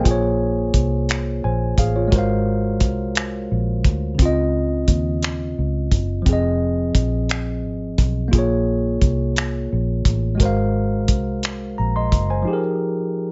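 A slow, straight 6/8 sway at 58 beats per minute sets the pace of this yearning, sultry R&B excerpt, cut from a longer piece. A cloth-damped acoustic drum kit, heard in a small room, supplies finger snaps, hi-hat and a tight, thuddy kick with a rolled-off top, running from 0.1 to 12.3 seconds. Beneath it, a vintage fingered electric bass, foam-muted and amped, sits low and round with a dark, punchy tone until 12.4 seconds. A clean tine electric piano played through a combo amp carries the accompaniment across the full 13.3 seconds, spanning a broad register as the harmony moves through Bbm7, Ab13, Dbmaj9 and Fm7 before cycling back and settling on Fm11. All three parts sit up front in a light reverb, with the overall sound kept mellow at the top.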